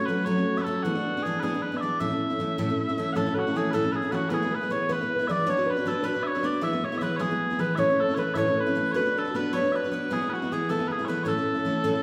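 Celtic folk in a cheerful, lively 6/8 at 104 BPM in A major, where sweet, vibrato-laden small bagpipes carry a continuous melody up front over a bright, full-bodied picked steel-string guitar with audible finger squeak, joined at 3.2 s by a dark, fingerpicked nylon-string guitar in the background, all set in the resonant reverb of a recital hall as chords move from F#m through E7, A and Bm.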